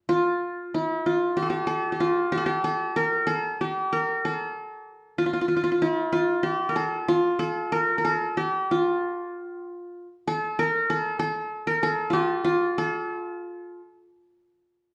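In a straight 4/4 at 94 BPM, this passionate, festive Arabic fragment in F maqam huzam, tuned to A4 = 442 Hz, features a solo acoustic qanun played with fingerpicks from 0.1 to 14.0 seconds, its bright-edged triple strings sitting up front in a wet, large studio reverb with a live-room feel, and the music moves into a new section at 9.9 seconds.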